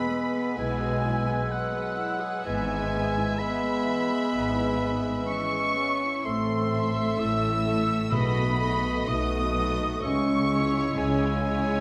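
A clear oboe sings high above this slow, serene romantic passage for symphony orchestra, set in E major at 64 BPM in 4/4 with a rubato feel and tuned to A4 = 441 Hz. Beneath it, a lush symphonic violin section carries the melody with vibrato, joined by a focused chamber violin section on a second line, while a dark clarinet and a pure, hollow silver flute add their own lines in the background. A distant viola section and a bassoon with light vibrato fill out the accompaniment, and a mellow French horn section holds sustained chords. Cellos and double basses enter at 0.6 s to give a rich, bowed bass, and timpani struck with hard mallets sound briefly at the start and again from 8.1 s under the B7 chord. The harmony moves from E through E/G#, Am and B7 to C#m in a wet scoring-stage reverb, and the passage is cut from a longer piece.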